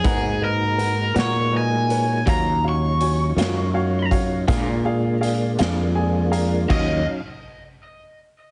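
Squeezed into a heavily compressed, radio-like sound with light reverb, this short cut from a longer slow blues in Eb minor moves at 54 BPM in 12/8 with a mournful, smoky mood: an overdriven, up-front garage guitar with tape echo carries the melody over a woody upright piano that adds a fill from 5.6 to 6.7 seconds, a slightly broken-up electric guitar with tremolo sitting in the background, a tonewheel organ holding sustained chords through chorus vibrato and a slow rotary speaker, a growly, punchy fretless bass, and a gritty, saturated garage drum kit of kick, snare, hi-hat and crash in a pumping stone room, all moving through Abm9, Ebm9 and Bb7.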